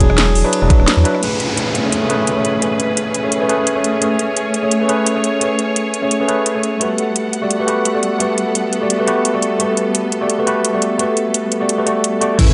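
Uplifting and lush, this liquid drum and bass excerpt runs at 172 BPM in A major with a light swing on the sixteenths, opening on a drop over an E9 chord before settling onto Amaj9 at 1.2 seconds and moving to Gmaj9 at 6.8 seconds. A barky, worn tine electric piano sits up front throughout, slightly out of tune and heard through its built-in speakers, with tape echo trailing its accompaniment. A garage drum kit with a cracking snare, metallic hats, rim clicks, ride and crash plays the whole way, while a knocking electronic kick, a deep, rumbling detuned saw bass and a warm, vibrato-laden alto saxophone in the background, roughened by vintage 12-bit sampler grit and tape echo, appear only in the opening second and again at the very end. From 1.2 seconds a rich, focused studio string section holds sustained bowed chords with sidechain pumping, joined by an electronic downlifter and impact. 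A moderate hall reverb adds space, and the top end is softly rolled off.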